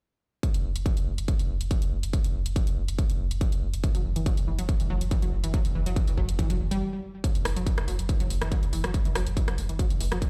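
A distorted electronic kick, layered and placed up front, and an overdriven techno kit of hi-hat and rim click together open this driving, hypnotic peak-time techno cut at 0.4 seconds, all in a straight 4/4 at 141 BPM. Almost at once a deep, round sine sub bass settles on F#1, colored by tube saturation, a low-pass filter and sidechain pumping, sustaining beneath an Esus2/F# harmony tuned to A4 = 435 Hz. At 3.8 seconds a lush, punchy unison pluck riff arrives, its detuned sawtooth layers, sine body and noise layer giving a full-bodied, decaying filter pluck that moves between E3 and G3 through delay and its own sidechain pumping. A brief stop opens at 6.8 seconds before the track resumes into a second section. The whole sounds as if played on a big sound system in a bare room, with a large studio reverb framing the relentless groove of this excerpt from a longer piece.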